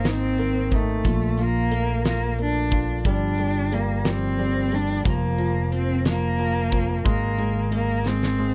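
From the first moment of this aching, melancholic six-eight pop ballad at 60 BPM, a rich, bowed cello sings the melody with smooth vibrato over polished baby grand piano chords, a dark, round fingered electric bass, a slightly broken-up, compressed electric guitar picking very quiet arpeggios, and a huge arena drum kit with a fat snare and punchy kick, captured in a dry, close 1970s-style studio sound, until a drum fill at 8.1 seconds closes this fragment of a longer piece.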